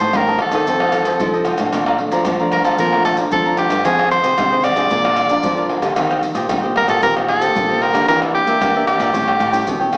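Festive and playful, this excerpt from a longer samba and choro piece moves at 113 BPM in a straight 4/4, set in Bb major. An edgy soprano saxophone carries the melody up front, playing a punchy, forceful jazz-style solo with vibrato that sits between G4 and D5. Behind it, a crisp, picked cavaquinho and a fingerpicked classical nylon-string guitar with a warm tone supply the accompaniment, while a second, darker nylon-string guitar stays in the background, fingerpicking the bass line. The percussion of maracas, pandeiro, tamborim and a deep surdo enters at 0.1 seconds, played with soft hands and sounding distant, as if in a large room. The chords move from Am7b5 and F7 into a passage that begins on Bbmaj7 at 1.7 seconds and passes through Fm7, Bb7 and Eb6 before turning to Em7b5 and A7. The whole mix carries a moderate large-studio reverb and has a small-speaker sound.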